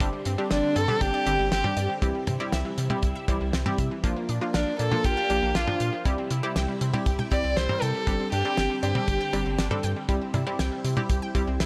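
A dark, woody solo violin carries the melody up front from 0.5 to 9.8 seconds, its vibrato touched by tape echo, in this nostalgic, bright synth-pop excerpt at 119 BPM in C mixolydian. Beneath it, a chorused analog pluck plays accompaniment, a lush unison pluck adds echoing arpeggios in the background, and a swirling phased string machine holds sustained chords over a round, deep analog bass. A dry, damped 70s drum kit with a fat snare, tight kick, hi-hat, toms and cowbell drives the groove, as the harmony moves through Gsus4, C and Bb in a light small-room ambience.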